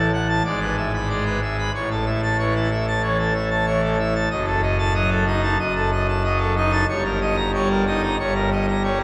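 A pipe organ on full organ, mixtures drawn, fills this short fragment of a classical organ toccata with a majestic, stormy grandeur. Playing solo from the opening moment to the close at 9.0 seconds, it spans from a deep F#1 up to a gleaming B5, its romantic voicing sounding brilliant and up front. The music moves at 93 BPM in a straight 4/4, and the harmony passes through E7/G#, A, D#dim/F# and D#7/G, giving the passage a restless, dramatic pull. A wet church reverb with a 3.7-second decay surrounds the organ, letting each chord bloom and hang in the vast space. Cut from a longer work, the fragment feels like a single turbulent gesture within a larger piece.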